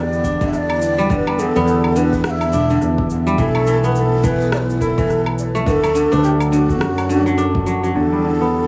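A loose 16th-note swing at 105 BPM in 4/4 sets up this short organic downtempo cut in E minor, with an overdriven electronic shaker, woodblock and rim click treated with analog delay entering at 0.1 seconds, followed by a deep, overdriven electronic kick at 0.2 seconds. A growly, up-front fretless electric bass with a subtle chorus anchors the low end, while a crisp, ringing kora plays fingerpicked arpeggios through a low-pass filter and dub echo. Above them, a breathy, end-blown ney carries the melody with vibrato and a distant, unsteady quality, its lines trailing into analog delay. A very quiet, dark analog pad of detuned sawtooth and triangle tones with a sub octave sustains chords underneath, moving from Em7 to B7sus4 at 3.4 seconds and on to D before returning to Em7. The echo-heavy mix sits in a small room with light reverb, giving the warm, meditative piece a hazy, spacious feel.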